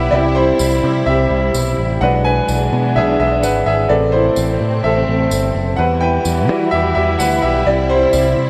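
Soaked in a lush hall reverb, the dreamy mix gives this short cut from a longer piece a spacious, hazy glow. It is dramatic, driving piano-driven pop in E minor at 127 BPM in a straight 4/4, tuned to A4 = 442 Hz. A bright, brilliant grand piano with a vintage character and long sustain sits up front and carries the accompaniment as the featured solo part for the full 8.5 seconds. Beneath it, a bowed studio string section holds lush, woody sustained chords with vibrato, while a picked electric bass sounds warm and direct. A jingly, dry tambourine enters at 0.6 seconds and stops at 8.2 seconds. The harmony moves from C through E7/B, Amadd9 and Emadd9 before returning to C.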